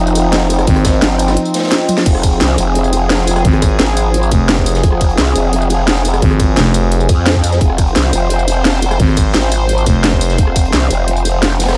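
A detuned sawtooth pad, airy and resonant with a noise layer and chorus, opens this tense, futuristic dark technical drum and bass excerpt, sustaining evolving chords over a single minor harmony. Alongside it from the start, a growl bass sits up front, aggressive and wobbling through a formant filter, saturated with overdrive and chorus, and pumping against the sidechain like the pad. A driving drum and bass kit enters almost at once, with a cracking snare, bright hats, ride, crash, rim clicks, tambourine and toms, all overdriven and re-recorded in a small room. Tucked far beneath it is a very quiet crunchy breakbeat kit of gritty hi-hat and a medium-tuned snare with a rolled-off top. A tight electronic kick and a thick FM bass arrive at 0.7 seconds, with a drum fill at 1.9 seconds, and the FM bass returns at 3.4 seconds to sit heavy and up front in the lowest register. Light reverb adds a digital ambience to the straight, relentless groove.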